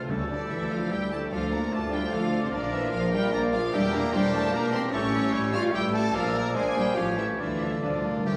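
Bathed in wet scoring-stage reverb, this stormy, dramatic classical fragment in D minor moves in a rubato 3/4 at 148 BPM, with an expressive, vibrato-laden violin section singing the melody over a softer second violin line, while a hollow flute section, a clarinet and an oboe weave further second lines, a bassoon and a focused viola section fill the accompaniment, a mellow French horn section and a clear trombone section sustain chords, a brilliant trumpet adds punchy stabs, and a dark double bass section, a rich cello section and a distant tuba anchor the bass, as very quiet timpani play from 0.1 s and return for a fill at 7.4 s as the harmony arrives on D minor.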